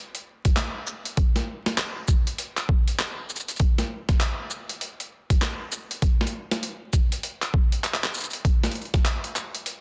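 A swung 16th-note groove at 99 BPM in 4/4 drives this short glitch hop cut, funky and swaggering from the first beat. A boom bap sampler-style kit carries the pattern from 0.1 s, with handclaps, hi-hat, shaker and a high-tuned snare, all pitched down, compressed and overdriven into a gritty crunch. An electronic kick drum joins at 0.5 s, thumpy and distorted, sitting up front and clearly louder than the rest of the kit. Both drum parts sound as if re-recorded in a large room, yet the mix stays dry, with little reverb around them. Vinyl crackle hangs over a dense, heavily limited master, giving the drums-only passage a dusty, sampled character.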